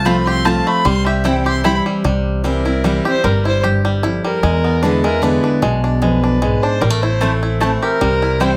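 A small room gives this short bluegrass excerpt a moderate, close ambience, with the guitar sitting up front and the fiddle set further back. The mood is joyful and rustic, moving at 151 BPM in a lilting 3/4 with a light swing, in C major. A dark, woody fiddle carries the melody with light vibrato, taking a solo over the first 2.0 seconds, while a full-bodied dreadnought guitar picks the accompaniment, its finger squeaks audible. A bright, twangy banjo played with fingerpicks spins percussive arpeggios, and a growly, thumpy upright bass plucks the low end. A mandolin with doubled strings adds picked stabs near the start and again from 7.2 seconds, as the harmony travels from F over C through C, E7 and A minor before settling back on C.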